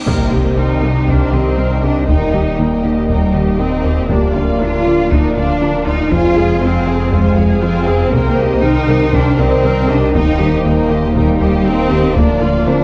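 Tense and brooding, this cinematic hybrid orchestral and electronic film score cue in C minor moves at 119 BPM in a straight 4/4, with a rich, focused cello section up front carrying the bass alongside dark double basses, a snarling distorted saw bass that growls beneath, and a punchy, funky analog bass riff, while violins with vibrato take the melody and a lush second line, violas with portamento accompany, mellow French horns and distant trombones hold sustained chords over a faint vintage analog pad, a ringing harp-like synth pluck traces arpeggios, a short-sustain grand piano adds texture, very quiet compressed taiko drums play with heavy sticks, and a huge, dark cymbal swell and impact opens the first 2.1 seconds, all heard through moderate scoring-stage reverb and a worn, warbling cassette-tape pitch drift as the chords cycle from Cm7 through Eb, Bb/D and Fm.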